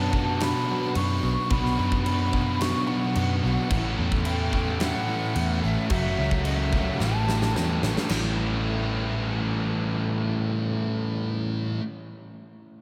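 A straight 4/4 pulse at 109 BPM drives this dreamy, blissful shoegaze and dream pop fragment in A mixolydian, where a breathy, hollow flute with delay floats its melody over an up-front overdriven guitar riff washed in reverse reverb, a bright double-tracked overdriven guitar and a dark fuzz guitar with subtle chorus in the background, a round, foam-muted vintage bass, and a huge arena drum kit with punchy kick and china and crash cymbals that plays a fill from 7.0 seconds before stopping at 8.2 seconds, all bathed in a cathedral-sized reverb.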